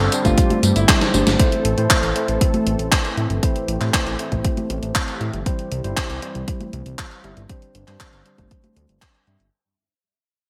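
This excerpt from an italo disco track opens with a grand piano melody set in the background, playing only until 1.3 seconds over a Gsus4 chord, alongside a smooth, detuned sawtooth pad holding sustained chords with chorus. A tine electric piano adds stabs roughened by vintage sampler grit, a low-pass filter and digital delay, while a fat, thick sawtooth bass with tube saturation anchors the low end. The up-front 80s drum machine brings congas, handclaps, hi-hat, tambourine and an overdriven snare soaked in gated reverb, joined at 0.2 seconds by a punchy, layered electronic kick, and a drum fill leads into the second section at 1.4 seconds. From there the harmony moves through Am, C and back to Gsus4 at a straight 118 BPM in A minor as the whole passage fades out. The mood is nostalgic and melodramatic, framed by a lush hall reverb and bright 1980s-style digital production.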